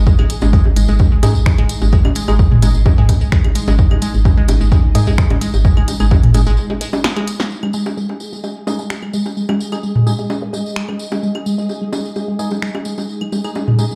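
A punchy, tape-warm electronic kick sits up front in this hypnotic, clinical minimal techno excerpt until 6.2 seconds, over a woody, round FM bass that pumps with the sidechain beside a flickering, grainy texture in the background. A squelchy, resonant blip pluck with phaser and delay plays the riff, while a punchy analog drum machine adds finger snaps, hi-hat and snare, electronic bongos, claves and toms sound re-recorded in a small room, a jingly vintage tambourine sits low, and a hollow, percussive organ stab carries chorus, phaser and dub echo. A short break with a drum fill at 7.0 seconds leads onward, and from 9.0 seconds a deep, moody ambient pad with chorus and built-in reverb settles in quietly, the whole mix framed by a large studio reverb as if played on a big sound system in a bare room.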